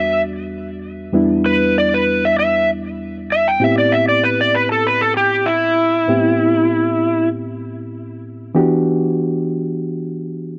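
An overdriven electric slide guitar sings a brooding, mournful blues melody up front over a reedy, clean electric piano heard through its built-in speakers, moving at 97 BPM in E minor through Em9 and Am9 chords in a dry, close 1970s-style studio sound, with the guitar falling away at 7.3 seconds while the piano carries on to 10.6 seconds in this fragment of a longer piece.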